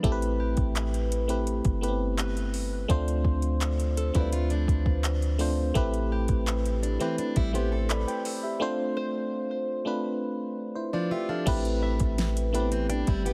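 A glassy, bell-like FM electric piano with a chorus shimmer opens over a round, deep 808-style bass and an up-front, overdriven R&B drum kit of soft kick, fat snare, metallic hats, handclaps and crash in this sensual, longing contemporary R&B excerpt in A minor at 84 BPM, moving between Am9 and Dm7. A plunky, twangy open-back banjo with digital delay sits in the background from 0.4 seconds, and a picked parlour steel-string acoustic guitar, also with delay, adds arpeggios from 4.1 seconds. A break at 8.6 seconds leads into a new section at 11.5 seconds, all framed in a dry, heavily compressed radio sound.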